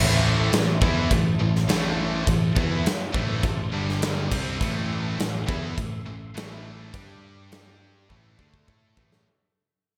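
A straight 4/4 pulse at 103 BPM drives this menacing, aggressive hard rock passage in A minor, where a punchy, up-front arena drum kit with gated reverb enters at 0.5 s beneath an amped picked bass, two overdriven cranked-stack guitars set back in the mix (one with analog chorus, the other with spring reverb) and a double-tracked high-gain distorted guitar riffing over Am and G5, while a very quiet tonewheel organ with key click and slow rotary holds sustained chords, framed by a bright 1980s-style digital production that fades out across the passage and ends on a drum fill at 8.1 s.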